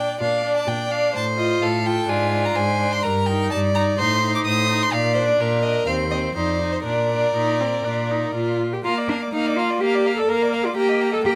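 A rich, bowed cello sits up front with vibrato beneath this graceful, spirited classical-period movement for string quartet, a quick 126 BPM passage in 4/4 and Bb major cut from a longer piece. Above it, two clear violins carry the melody and a second line with smooth, even vibrato, while a focused viola fills in the accompaniment, all four players sounding together throughout in light reverb. The harmony moves from Bb through F/A, Eb/G and an Adim chord before the opening theme returns at 8.8 seconds and settles on Eb/Bb.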